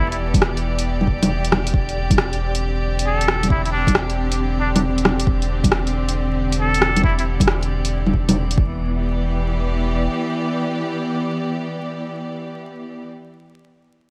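A swung sixteenth-note groove at 136 BPM in 4/4 drives this rainy, melancholic future garage fragment in E minor, built on a deep, layered electronic kick and an up-front deep house kit of bongos, hi-hat and rim click, both tape-tinged and re-recorded in a small room. Beneath them a round, mellow sine sub bass holds E1 with sidechain pumping, while a close, symphonic string section sustains bowed chords with light vibrato, biting and intense in tone, also pumping as the harmony moves from Em7 to Csus2/E. From 3.1 s a solo trumpet with a straight mute carries the melody, nasal and breathy with scooped notes and a whispered, intimate pop delivery, its phrases trailing into dub echo. Far in the background, a calm glass-harmonics texture hangs on a bright D5, its drifting overtones treated with chorus and built-in reverb. Vinyl crackle, light reverb and digital ambience wrap the mix, and after the kick drops out at 8.7 s the sub bass lingers until 10.1 s while the strings carry on until 13.1 s.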